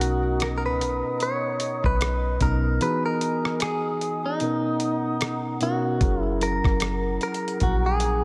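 Contemporary R&B at a slow 75 BPM with a swung sixteenth feel, carrying a longing, moody air through lush major-seventh chords that give way to a ninth chord at 6.0 seconds. A clean, twangy guitar with spring reverb carries the melody over a mellow tine electric piano bathed in lush chorus, while a soft, round 808-style bass sits deep beneath a gritty, compressed sampler-style kit of hi-hat, rim click and thumpy kick, the kick dropping out between 2.8 and 6.0 seconds. An airy flute ensemble with vibrato holds sustained chords in the background of this short cut from a longer piece.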